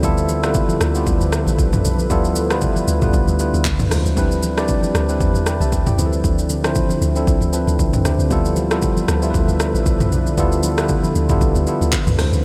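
Drenched in a huge ambient reverb with a 5.8-second tail, this dreamy amapiano excerpt has a deep, hypnotic mood, moving at 116 BPM in 4/4 with a 55% swing on the sixteenths. Up front, an electronic deep house drum kit with an overdriven, layered character and a deep kick lays down handclaps, hi-hat, rim click, shaker and toms, sounding as though it was re-recorded in a small room. Beneath it, a round, percussive log drum bass with a fast attack, a noise layer and a dark decay anchors the low end. A clean, direct tine electric piano carries the accompaniment at the front of the mix, while a moody, detuned sawtooth pad with a sub octave, chorus and slow attack holds sustained chords in the background. Very quiet congas with thick, damped skins and a warm, close tone join at 0.3 seconds. The harmony cycles through G13, C#maj9, Cmaj9/D and Dm9 before returning to G13 and C#maj9.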